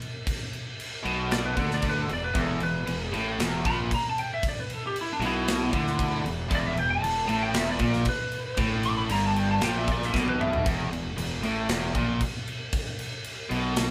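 A tight, up-front metal drum kit with bright cymbals opens this menacing, aggressive hard rock passage alone before a bright distorted guitar, a double-tracked overdriven electric guitar and a sludgy distorted guitar join on a low riff over a growly fuzz fingered bass, while a twangy, slightly broken-up lead guitar solos above until a drum fill carries the band at 10.7 s into a new section on E5, all set in a small, reverberant room.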